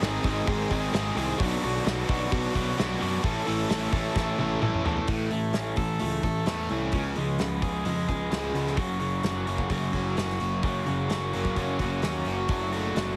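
Heavily compressed with a radio-like sound, light reverb and a small-room ambience, this indie rock excerpt at 130 BPM in 4/4 feels carefree and jangly, settling into F# major from 8.8 s. A bright, up-front overdriven electric guitar and a hollow-bodied semi-hollow guitar with lush chorus play a riff throughout, over a dark, round fuzz bass and a loose drum kit with a punchy kick and pumping room sound that plays a fill from 4.2 s. A very quiet, shimmering vintage string machine holds sustained violin chords until 5.1 s.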